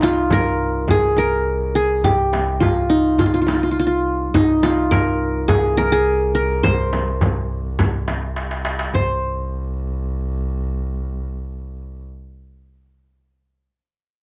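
Longing and soulful, this Arabic maqam ensemble piece, cut from a longer work, places a bright-edged, plectrum-plucked qanun up front, playing the melody over a single bowed double bass that holds an intense, boxy C2 drone with vibrato and an airy bow. A crisp, metal-shelled darbuka struck with hard hands sounds distant in a large room, while a deep frame drum sits in the background, and both carry the straight 4/4 pulse into a drum fill at 8.4 seconds before stopping at 9.2 seconds, leaving the qanun and bass to ring on. The sound is a dry, close 1970s-style studio recording touched with light reverb.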